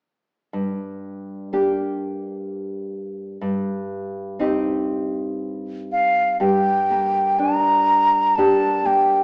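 An airy wooden flute, with vibrato and a crisp attack, carries the melody in this Celtic slow air, entering up front at 5.9 s and singing high in its register. Before it arrives, a classical nylon-string guitar opens alone at 0.5 s, its thumb-plucked accompaniment sitting close and round in tone as it moves from G minor toward C minor over a G bass. The feel is rubato in a three-beat metre, and the mood is mournful and full of longing. A moderate recital-hall reverb lends the pair a churchlike space, though the overall sound has a small-speaker quality. This brief excerpt is cut from a longer piece and ends just as the flute's melody is getting underway.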